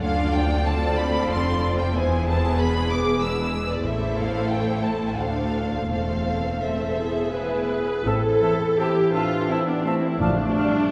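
Classical orchestra in A minor at 81-95 BPM in a rubato 3/4, melancholic and solemn under a cathedral-like reverb, with lush vibrato violins carrying the melody and a second line over up-front viola accompaniment, cello and distant double bass, before a warm clarinet joins at 7.0 s, then an airy flute, clear oboe, mellow bassoon and French horn chords enter at 8.1 s, and dry, hard-mallet timpani close the passage at 10.2 s.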